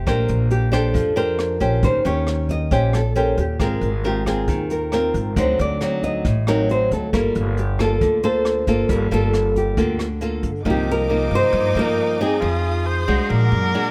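Wistful and smooth, this bossa nova fragment moves at 136 BPM in a straight 4/4, set in G minor before shifting to C minor at 10.7 seconds. Two fingerpicked nylon-string guitars carry it from the start: one sings the melody with a small, up-front tone, while the other, full-bodied and deep in a classical vein, plays the accompaniment through chords such as Bb69, Ab69, D7b9 and Gm9. A woody, thumpy upright bass on gut strings sits close beneath them, and a brushed jazz kit adds hi-hat, rim click and a boomy kick with a dark, rolled-off top until it drops out around 10.5 seconds. As the harmony turns to Cm11 and Fm7, a dark erhu enters with a second line, its airy bow, light vibrato and portamento sounding intimate and close. Behind it, a lush symphonic violin section holds warm sustained chords, and the whole sits in a dry sound before the cut ends on a Bbaug7.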